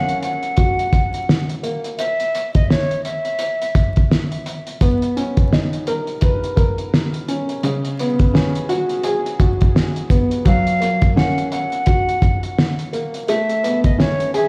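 Boom-bap hip-hop with a soulful, swung feel, this short cut is driven by a cloth-damped, thuddy drum kit whose fat snare, tight kick and hi-hat sound muffled and gritty, with vintage 12-bit sampler grit and a rolled-off top. A woody, boxy upright piano with short sustain and a cassette-tape coloring carries the jazzy chords throughout, moving through lush major-seventh and suspended harmonies. A breathy, close-miked silver concert flute with a straight, expressive tone and a touch of delay plays the melody at the start and returns at 10.5 seconds, all set in a large studio reverb with vinyl crackle, as if played over a big sound system in a bare room.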